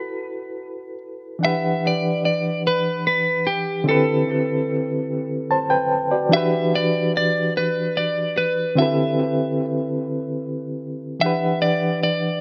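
A barky, reedy electric piano with light overdrive and fast tremolo sits up front through its built-in speakers, laying down accompaniment that moves from B7sus4 into alternating Em9 and D13sus4 chords in this late-night, yearning R&B fragment in E minor at a slow 49 BPM in 6/8. Beside it, a clean, picked and compressed electric guitar carries the melody between G4 and E5, colored by analog chorus and delay. Both parts play throughout, and light reverb gives the mix an echo-heavy glow, with tuning set at A4 = 445 Hz.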